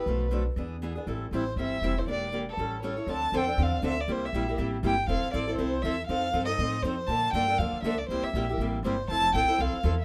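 Virtuosic and fiery, this short cut of acoustic string swing sets a bowed, expressive violin melody with vibrato and portamento over a bright, boxy picked steel-string acoustic guitar with audible finger squeak and a woody, thumpy pizzicato upright bass on gut strings, all up front in a small room as the chords move from a minor-key turnaround into a second section that settles on Fmaj7 at 9.1 seconds.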